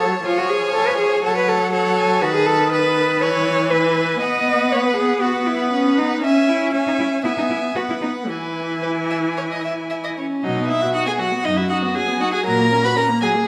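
A wet recital hall reverb surrounds this string quartet and gives the bowed parts an airy bloom. It is a quick, graceful and cheerful classical-period movement, cut from a longer piece and played with a rubato feel. The first violin carries the melody with a rich, focused tone and vibrato from a slightly distant placement, while the second violin shapes a supporting line beneath it. The viola sits up front in the accompaniment, expressive with vibrato and portamento, and the clear, focused cello anchors the bass from close by. At 10.4 s the music moves into a new section with a shift in harmonic centre, and the cello stops at 12.9 s, just before the others finish.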